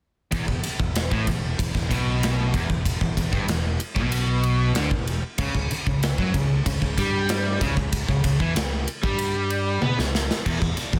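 A punchy, gated 80s drum kit sits up front in a bright stone room, its crash and ride cymbals, kick, medium-tuned snare and toms driving this aggressive hard rock excerpt at 95 BPM in E dorian, with a drum fill from 9.8 to 10.5 seconds. A crunchy overdriven guitar and a brighter distorted guitar set back in the mix play low riffs over a growly, amped fingered bass, moving from E5 to C#(b5, no3) at 5.4 seconds. A very quiet, double-tracked overdriven guitar slips in at 10.5 seconds, all under studio reverb and a dense, heavily limited modern master.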